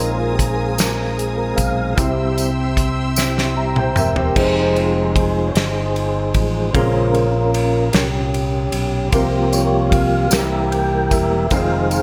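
Solemn and fervent, this slow gospel excerpt moves at 50 BPM in a straight 6/8 feel in F minor. A mellow, lightly overdriven tonewheel organ sits up front with sustained chords, its slow rotary speaker, chorus vibrato, key click and third-harmonic percussion giving it a round, dark voice as it takes the lead throughout. A grand piano with long sustain and an ensemble chorus effect fills in the accompaniment, while a punchy fingered electric bass holds the low end. An acoustic country drum kit with dark cymbals, a punchy kick and a medium-tuned snare under gated reverb drives the groove, with a fill from 3.2 to 4.4 seconds. A lush, bowed string section with vibrato adds smooth high chords until 4.3 seconds, and a jingly tambourine plays early on and returns at 9.1 seconds as the harmony moves from Fm7 through Bbm7 to C7sus4 and C7. The bright 1980s-style digital production is bathed in plate reverb and a small room ambience.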